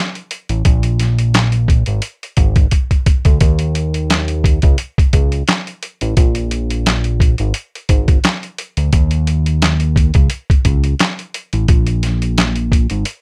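Dry and close, this dark, reflective boom-bap hip-hop excerpt at 87 BPM in swung 4/4 sets a gritty, pitched-down sampler drum kit of thumpy kick, medium-tuned snare, hi-hat and handclaps up front beside a fat, detuned sawtooth-and-square analog bass with a moving notch, sustained low notes between Ab1 and Eb2, with a drum fill at 2.7 seconds and a break at 13.1 seconds.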